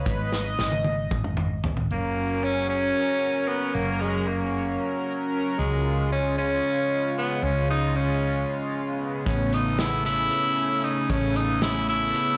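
A raspy tenor saxophone carries the melody in this driving, intricate progressive instrumental in 7/8, cut from a longer piece. It enters at 1.9 seconds with a gritty, scooped, pop-style voice, light vibrato and a smooth top, set up front with plate reverb and digital delay. Before that, a chorused pulse-width pad opens alongside the bass under an acoustic drum fill. The pad's shimmering, retro, detuned tone, with a slow attack and long release, sustains chords throughout with its own plate reverb. A dark, round fretless electric bass with a woody, hollow-body sound holds the low end. The natural country drum kit, with its punchy kick and medium-tuned snare, returns at 9.3 seconds, and the whole recording has a blown-out, overdriven quality in a small room.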